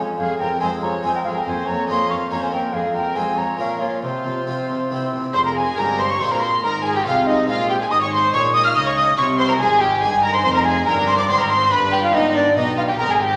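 A wet recital-hall reverb surrounds this stormy, driving excerpt from a baroque-style concerto movement in triple time, where a close-miked wooden flute carries an airy, tongued melody while a violin section also plays the melody in the background. A rich, smooth-topped second violin line sits forward, and a nasal viola section, a brilliant, plucked French-style harpsichord and a gut-string cello section fill out the accompaniment and bass in period style. At 5.3 s a reedy double bass section joins low in the background, and the harmony arrives on a G chord at 11.7 s.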